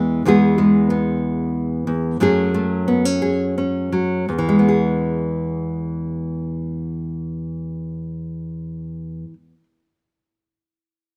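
Gentle and pastoral, this short fragment of a longer folk piece features a lone fingerpicked nylon-string guitar in a classical style, sitting up front and dry in an open outdoor setting, moving in a straight 6/8 at roughly 55-63 BPM in E major with tuning set to A4 = 436 Hz, easing back in pace over its opening 4 seconds as the harmony drifts from E to F#madd9 at 2.2 seconds before settling on E again at 4.3 seconds.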